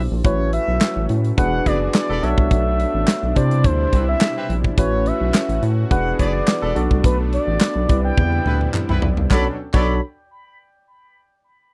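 A barky, clean electric piano and a rubbery, bouncy square-wave bass open this slick, late-night slice of early-eighties boogie funk at 106 BPM. The bass sits up front with a dark, resonant filter pluck. From 0.2 seconds a tight, up-front drum kit, a brassy analog pad with chorus sitting in the background, and a smooth, expressive synth lead with chorus and tape echo come in over a cycle of A6, E9, Bm7 and Cmaj7. Group handclaps join at 0.8 seconds and a clear horn section with light vibrato arrives at 1.7 seconds, before a drum fill at 8.2 seconds leads into a new section on Bm7, all in a dry, close 1970s-style studio sound.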